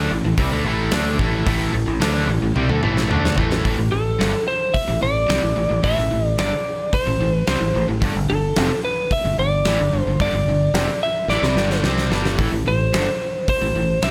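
A straight 4/4 pulse at 110 BPM drives this menacing hard rock excerpt in A minor, where a bright, overdriven semi-hollow guitar and a compressed, distorted electric guitar set in the background churn out the riff over a growly fingered bass, a huge arena drum kit with a fat snare and punchy kick sits up front and throws in fills at 2.6 and 11.3 seconds, and from 3.9 seconds a slightly broken-up lead guitar with slapback echo carries the melody as the chords move from Am to Gsus2 and back to Am.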